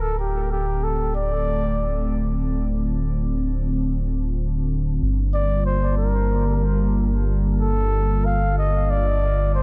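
A veiled, bucket-muted trumpet sings a solo melody with light vibrato and dub echo over a detuned, chorused analog pad carrying a filter sweep and a deep, round sub bass, in this hazy, meditative ambient dub excerpt at 93 BPM in G minor that moves from Dm7 to Gm9 at 5.0 seconds within an echo-heavy small-room mix.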